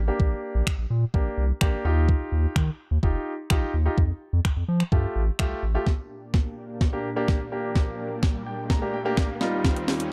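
A dark, warm digital ambience wraps this euphoric, carefree dance-pop excerpt in Bb major, moving at 127 BPM in a straight 4/4. A round, deep analog bass with a nasal edge pumps up front against the sidechain until 5.8 s, while a present, polished grand piano carries the chords, also pumping to the beat, from Bb6 through Ebadd9 and Fadd9. The sampler-style drum machine sits forward with a thumpy kick, a medium-tuned snare, hi-hat and finger snaps, its overdriven hits re-recorded in a small room. At 5.9 s a build-up begins with a drum fill as a lush, thick, detuned sawtooth pad enters with a slow attack, its bright sustained chords shimmering with chorus and tremolo. An electronic riser rises in the background from 7.7 s, and the piano adds a fill before the passage is cut off mid-build.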